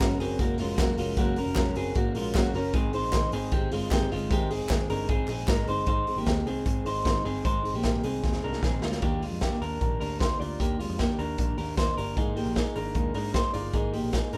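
A straight 4/4 pulse at 153 BPM drives this breezy, youthful jangly indie pop excerpt in Eb major, where a gritty garage drum kit with a boomy kick and pumping room sound sits up front and breaks into a fill from 8.2 to 9.0 s, under a dark, round, foam-muted picked electric bass, slightly broken-up, compressed electric guitar arpeggios from a small old amp, and a full-bodied fingerpicked steel-string acoustic guitar, while crisp group handclaps sit in the background until 5.6 s, the chords moving from Gbadd9 to Ab and then Ebmaj7 in a rough home-demo mix with light small-room reverb.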